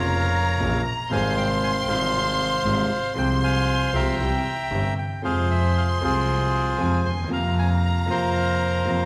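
A reedy, up-front bandoneon carries the melody through this sultry, melancholic tango excerpt in F harmonic minor at a rubato 116 BPM, alongside a lush, bowed violin section on a focused second line, a vintage concert grand piano with deep bass accompaniment, and an earthy, distant bowed double bass with light vibrato, all set in the wet reverb of a recital hall across 9.1 seconds.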